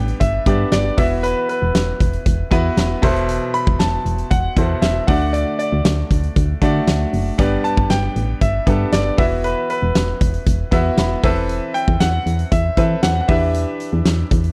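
A dry, close recording in a 1970s studio manner gives this dramatic, moody piece of 1980s-style pop in E minor a present, unadorned sound at 117 BPM in a straight 4/4. A brilliant concert grand carries the melody with a slapback echo while a second, open-toned grand piano accompanies and adds short fills at 2.5 and 10.7 seconds. Beneath them sit a round, punchy FM bass and a huge arena drum kit with a fat snare and punchy kick, entering at 0.1 seconds. The chords move through G, Esus2, Amadd9/E and D before settling on Em7 near the close of this fragment cut from a longer piece.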